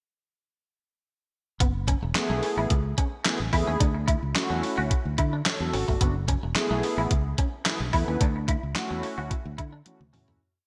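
From 1.6 seconds, a thumpy 12-bit drum machine beat, its fat snare layered with clap and bathed in gated reverb, drives this funky, late-night early-eighties boogie funk piece at 109 BPM in F# minor, alongside a growly fingered bass line with syncopation and chromatic approach notes and a twangy, muted single-note guitar riff with ensemble chorus; from 2.1 seconds, detuned sawtooth synth brass adds syncopated stabs and short fills on rootless F#m11 and Dmaj7 chords, and the bright digital 1980s-style production fades out from 8.2 seconds under a closing drum fill.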